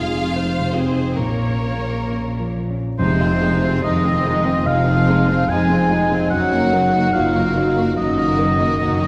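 Cinematic, emotional film score excerpt, bittersweet and moving in a rubato 4/4, in which a clear violin section carries the melody over a rich second violin line, a dark, mellow grand piano with audible action noise, expressive violas with portamento, smooth cellos, double basses and a soft-attack clarinet that stops at 2.5 s, before a close-miked oboe, a pure silver flute and a distant, roomy horn section enter at 3.0 s with a brief touch of very quiet, dry timpani, heard from further back in a wet scoring-stage reverb.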